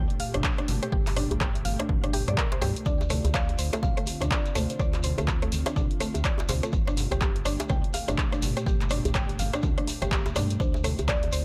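A swung sixteenth-note groove drives this earthy, hypnotic afro house excerpt, built on a punchy, overdriven electronic kick and an overdriven deep house kit of handclaps, hi-hat and rim click. A tight, cracking djembe, very quiet soft-handed congas and, from 2.9 s, a grainy shekere in the background fill out the percussion, while a round, dark analog bass and an ethereal, detuned pad with built-in reverb both carry sidechain pumping. A woody, bright FM mallet pluck plays arpeggios through chorus and tape echo, and a hollow, thumb-plucked kalimba adds short echoed phrases at 2.9 s and again at 10.6 s, all captured in a dry, gritty hardware recording.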